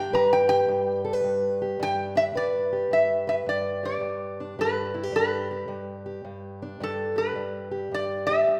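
A metal-body resonator slide guitar carries the melody up front, its metallic, nasal tone coming from a steel bar slide and fingerpicks. This is a laid-back, soulful acoustic country blues piece in G major, moving at 108 BPM in 4/4 with swung eighth notes. A fingerpicked acoustic archtop guitar plays the accompaniment alongside it throughout, also up front, with a warm, boxy body and fresh strings. The opening 2.4 seconds give way to a new section that runs to the close at 8.6 seconds. Both guitars sit in a generous recital-hall reverb, recorded in a church or concert hall, which lends the duo a spacious glow in this short cut from a longer performance.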